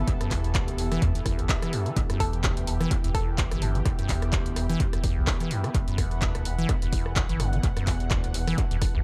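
A squelchy, resonant square-wave acid bass riff drives this gritty acid house excerpt in E minor at 127 BPM, its tube saturation and tape echo riding a sidechain pump shared with a round sine sub bass and two pads: a lush, detuned sawtooth unison pad holding sustained chords, and a moody, dark ambient texture bathed in its own reverb. A punchy, tape-tinged electronic kick sits up front beside an analog drum machine's handclaps, hi-hat and rim click with analog delay, over a swung 4/4 groove. A nasal, bouncy square pluck with chorus touches A4 briefly between 2.2 and 3.6 seconds, set in a light digital reverb and an echo-heavy mix.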